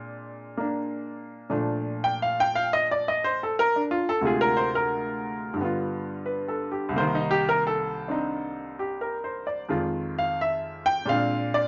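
Playful and relaxed, this short cut from a longer solo jazz piece features a baby grand piano, clear and natural in tone with a short sustain, placed up front and moving with a loose swing and rubato feel. After a brief opening on a Bb9 chord, the piano takes its solo at 1.5 seconds, ranging from low C2 to G5 through a progression of Bbmaj7, Dm7b5, G7, Cm7 and Fm7 before returning to Bb9 at 11.1 seconds. A moderate studio reverb gives the piano a modest sense of room, and the top end is cut off above 7.6 kHz.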